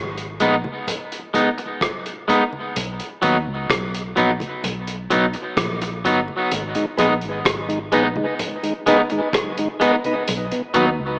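A slightly broken-up, twangy electric guitar with tape echo sits up front in this deep, spacious dub reggae piece at 64 BPM in G# minor, over a dark, foam-muted fingered bass, a muffled, lo-fi drum kit of tight kick, hi-hat and rim click, and bright, low-tuned congas with tape echo in the background, while a smooth tonewheel organ with key click, a stopped rotary speaker and tape echo joins at 6.8 s, in an echo-heavy mix with echo chamber reverb and an AM radio sound.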